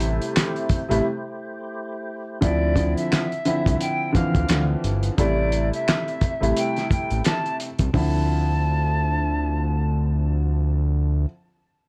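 A dark upright piano, woody and worn with audible action noise and a cassette-tape character, carries the accompaniment up front through this reflective, moody boom-bap hip-hop fragment, joined by a fat, detuned sawtooth analog bass with a filter sweep. A percussive tonewheel organ with key click and slow rotary speaker holds sustained chords until 2.4 seconds, when a distant silver concert flute with vibrato enters to carry the melody until 10.0 seconds. Underneath, a muffled, cloth-damped drum kit of kick, snare, toms, hi-hat and handclaps plays with a swung feel until 8.1 seconds, all set in a lightly reverberant mix.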